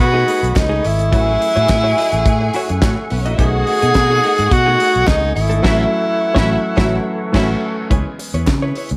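A breathy tenor saxophone carries the melody from the first moment, up front with subtone and scooped notes in a jazz style, over a joyful, danceable disco groove at 106 BPM in a straight 4/4. Around it, a lush, bowed string section adds a smooth second line, while a clean, direct-recorded electric guitar and a present baby grand piano fill out the accompaniment. A lightly overdriven tonewheel organ holds sustained chords in the background through a slow rotary speaker, and a dark, round fingered bass sits punchy and up front. The damped 70s drum kit enters at 0.3 seconds with a fat snare and tight kick, joined at 0.6 seconds by very quiet, hollow group handclaps. The harmony moves between B13 and A6, and the band hits accents from 5.7 seconds. The strings and saxophone drop away just before a C#m7 arrives at 7.9 seconds, where the organ also falls silent. This leaves the rhythm section to close this piece, cut from a longer performance, in a moderate large-studio reverb.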